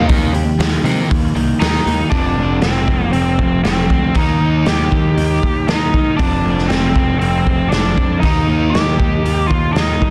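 A dense, heavily limited modern master with light reverb frames this anthemic, cathartic cut of quiet-loud alternative rock in a straight 4/4. A raw garage drum kit sits up front, its saturated, gritty sound recorded in a bright stone room with a rolled-off top, a tight kick, a medium-tuned snare and hi-hat. A growly fuzz bass, played with a pick through overdrive, anchors the low end. A dark overdriven electric guitar riff drops out at 2.1 seconds, while a hollow-body semi-hollow guitar keeps its overdriven riff going in the background and a clean, fingered electric guitar adds very quiet arpeggios. Over the top, a biting lead guitar carries the melody up front with overdrive and slapback echo, as an opening Ebadd9 gives way to a swing between F and Eb.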